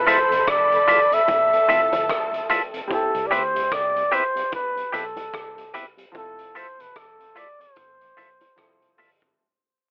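A light reverb, vinyl crackle and a narrow telephone-like tone give this short lovers rock reggae fragment a faded, old-record feel, and it fades out across its whole 9.4 seconds. At 74 BPM in 4/4 with a swung sixteenth-note lilt, the mood is sweet and tender, moving from Fmaj7 to Cmaj7 at 2.9 seconds and back to Fmaj7 at 6.1 seconds. Up front, a breathy, whispered flugelhorn carries the melody with a soft attack and light vibrato, sitting beside bright, compressed stabs from a clean, picked electric guitar with a pronounced twang. A lush sawtooth string machine with ensemble chorus holds a sustained second line only until 2.9 seconds. In the background, a clear but worn grand piano and a mellow, dark tonewheel organ with key click and slow rotary speaker fill out the harmony, while a round, foam-muted fingered bass sits deep underneath. A vintage kit with tight kick, hi-hat and rim click, heard in a studio room with a rolled-off top, plays alongside close, dry, low-tuned bongos played with soft hands.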